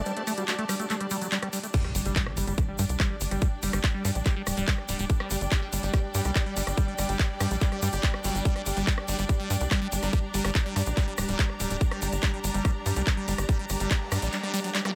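A tight, nasal sequencer bass drives this alien, intense psychedelic trance excerpt in G minor at 143 BPM, entering at 1.9 seconds, just after the drop lands at 1.7 seconds with an up-front electronic kick, an impact and a noise sweep, beneath a squelchy, resonant acid bass riff with phaser, distant biting bowed strings, a faint pulsing gated texture, a garage kit of claps, rim clicks and hats, a grainy egg shaker and a brief wobbling formant bass.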